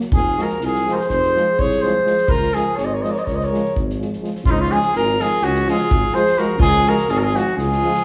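An acoustic drum kit opens this short fragment of Balkan brass band music, its punchy kick and medium-tuned snare struck with bundle sticks in a small-room sound. Almost at once a mellow cornet takes the melody up front, sounding distant and roomy, while a tuba with a soft attack and smooth top carries the bass. A clear alto saxophone adds a second line with light vibrato, and from 0.4 seconds a warm euphonium and trombone fill in the accompaniment in the background. The tempo races at 250 BPM in a straight 9/8 in Db major, moving from F minor to Db around 2.3 seconds, with a second section beginning near 4.4 seconds. The band plays live together in one room, wrapped in a lush large-studio reverb, and the mood is wild and festive, with a classical polish to the horns.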